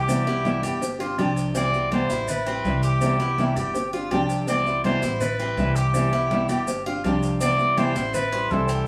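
A straight 4/4 pulse at 164 BPM drives this relaxed, sunny slice of Cuban son and guajira in C major, cut from a longer piece and cycling through Cmaj7, G7sus4 and Am9 for its whole 8.9 seconds. Up front, a breathy trumpet carries the melody with a soft attack, vibrato and a whispered, intimate, vintage tone, set beside a fingerpicked nylon-string guitar that supplies small, warm accompaniment. A bright, metallic Cuban tres with doubled strings picks arpeggios a little further back, while a pizzicato upright bass on gut strings gives a thumpy, woody low end. In the background, damped congas with a thick skin and a tight, high-tuned, saturated cowbell fill out the groove, joined by grainy maracas heard close and dry and very quiet claves that sound distant, as if from a large room. The band plays live together in one room, wrapped in a wet studio reverb.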